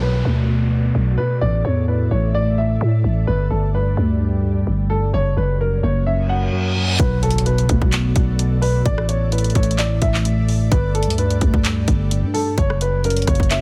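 A growling, buzzy 808-style bass anchors this menacing, melancholic trap excerpt in B minor, running at 129 BPM with a half-time feel. Above it, a worn, intimate grand piano carries the melody through a low-pass filter, its boxy tone marked by audible action noise. A mellow tine electric piano, clean and heard through its built-in speakers, supplies accompaniment with a phaser and low-pass filter. An ethereal, airy pad of detuned unison sawtooth and triangle layers with a noise layer holds sustained chords, its slow attack and long release softened by ensemble chorus and built-in reverb. Electronic effects include a downlifter, and a reverse cymbal leads into an impact at 7.0 seconds, where a trap drum kit enters up front with a hard-clipped kick, bright hi-hats, handclaps and rim clicks over the cycling Bm7, Asus4, Gsus2 and F# progression. The dense, heavily limited modern master sits in a digital ambience.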